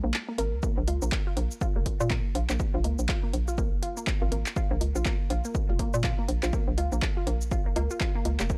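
A quirky, sparse minimal techno cut in Bb minor opens on a short break, where a squelchy, resonant blip pluck riff and a hollow, knocking FM bass sound together over a Bbm7 chord, both pumping against the sidechain. At 0.1 seconds a punchy analog drum machine joins with handclaps, hi-hat and shaker, given an overdriven edge. At 0.6 seconds the drop arrives as an overdriven electronic kick drum lands up front, and the harmony settles onto Bb5. The track moves at 122 BPM in 4/4 with a 59% swing on the sixteenths, giving the groove a swung lilt. The pluck sits low in the mix, coloured by phaser and tape echo, while the fast-attack bass stays forward. The sound is a dry, gritty hardware recording set in a digital ambience, and the passage is cut from a longer piece.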